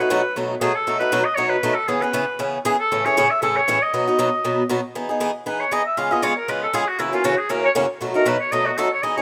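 Jazz at a brisk 235 BPM in 4/4 with a light swing, this short, charming cut from a longer piece pairs a clear oboe melody, played in a classical style with light vibrato, soft attack and a slapback echo, against a bright, boxy picked acoustic guitar with fresh strings providing swing-style accompaniment throughout. The chords move from B7 through C#m7 and Amaj7, and at 4.9 seconds the oboe takes a solo over Emaj7, C#7 and F#7 before settling back on B7. Light reverb and a rough home demo mix give the oboe a somewhat distant, roomy quality even as both parts sit up front.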